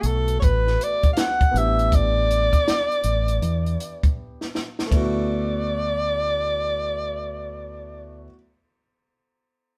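This relaxed jazz-hop excerpt moves at 80 BPM in D major, with a lazy 16th-note swing that gives the hip hop groove an easy, laid-back lilt. A breathy alto saxophone carries the melody up front, its soft attack, gentle vibrato and scooped notes giving the line a warm, jazz-styled voice. Beneath it, a dark, mellow grand piano comps quietly with an intimate tone, long sustain and the faint sound of its action audible. A deep, round fingered electric bass sits up front with a punchy, dub-weighted tone. The compact cocktail kit pairs a tight kick and high-tuned snare with dark cymbals, plays a fill from 4.2 seconds and stops at 5.1 seconds, while the harmony moves between a rootless D6 and A7sus4 before returning to D6 at 4.9 seconds. The band sounds like it is playing live together in one room, with light reverb and a natural, close feel.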